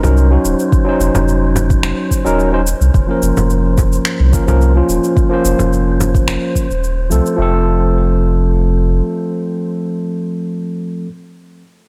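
A bright, barky tine electric piano sits up front, its gritty overdrive coloured by a combo amp and trailed by digital delay as it pumps against the sidechain through chords of Ebm7 and Bbm. This organic downtempo piece is mystical and earthy, moving at 108 BPM in a straight 4/4 in F phrygian dominant, and it is cut from a longer piece. Beneath it, a round, dark analog bass holds a deep, sustained low end with a fast attack, pumping along with the piano, while a deep, overdriven electronic kick drives the groove. Overdriven electronic shaker and finger snaps add a produced edge, a close, dry frame drum murmurs in the background, and a breathy, wind-like tuned noise layer hovers on a high C with its own reverb, all in a lightly reverberant space. The shaker, snaps and wind texture stop at 7.4 seconds as the harmony settles on F, the bass drops out at 9.0 seconds, and the electric piano plays alone until 11.1 seconds.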